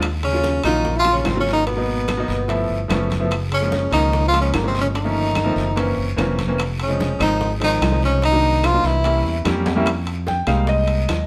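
A live-room sound with moderate studio reverb gives this fiery, sophisticated Afro-Cuban jazz excerpt a natural sense of space, as a full band plays together at 147 BPM in a straight 4/4. A clear concert grand piano with deep bass supplies accompaniment, while a modern fingered electric bass sits up front with a bright, direct tone. The percussion section includes ringing metal-shell timbales, woody claves, a raspy guiro, tight high-tuned bongos and very quiet, thin-skinned congas played with soft hands. From 0.2 seconds a breathy tenor saxophone carries the melody, up front with a subtoned, lightly vibratoed jazz voice and scooped notes. Beneath it a dark, gritty, growling trombone plays a second line in the background until both horns stop at 9.5 seconds. The chords move through sophisticated extended harmonies before a drum fill leads into a brief grand piano solo from 9.9 seconds over Fm11.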